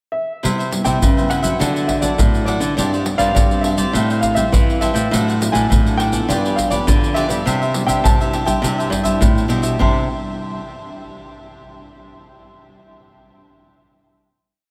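This short samba and choro piece in C major moves at a lively, festive 103 BPM in a straight 4/4, tuned slightly low to A4 = 436 Hz. A warm baby grand piano carries the motif-based melody in song-like phrases, set in the upper register and colored by lush chorus and tape echo. Beneath it, a crisp, picked cavaquinho strums in sixteenths, while a classical nylon-string guitar sits in the background with lush chorus, playing thumb bass and syncopated plucked chords on fresh strings. A second, smaller nylon-string guitar is fingerpicked up front, supplying a samba bass figure, and close, dry samba percussion of deep surdo, pandeiro and tube shaker is played with soft hands. After a brief pickup, the harmony moves from Cmaj7 through D, Gsus4, Am7, D/A and G7 to Cadd9, and the piece closes on a final chord at 9.8 seconds, with the whole mix soaked in a huge, dreamy ambient reverb.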